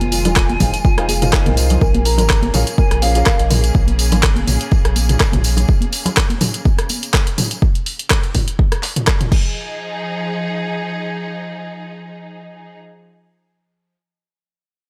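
A lightly swung 4/4 groove drives this earthy afro house drop, cut from a longer piece. A deep, tape-colored electronic kick sits up front from 0.4 s, layered with a house kit of crash, handclaps, hi-hat, rim click and toms that was re-recorded in a small room. Bright congas played with soft hands and a jingly tambourine in the background add acoustic texture. A round sine sub bass pumps against the kick. Woody kalimba arpeggios and intimate felt-muted upright piano stabs, with audible action noise, also pump and trail into dub echo, while a distant, hollow silver flute with vibrato carries a short melody through the same echo. Smooth symphonic strings hold bowed chords moving from Fm7 to Bbm7, pumping with the groove, and linger alone after the drums stop at 9.4 s until 12.8 s, all set in a studio reverb.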